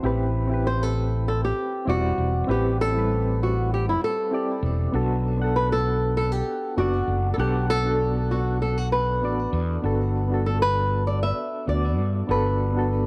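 A thumb-plucked flamenco guitar carries the melody in this relaxed sunset chillout excerpt, its dark acoustic tone touched with delay as it enters at 0.7 seconds over a straight 98 BPM pulse in A dorian. Beneath it, soft electric-piano-like synth keys with a round, sine-like tone and a fast attack that gently decays shimmer through chorus, tremolo and tape echo, moving from Am7 to Bm7 to Gmaj7. A bright, growly fretless electric bass sits up front, and light reverb gives the short passage a gentle glow.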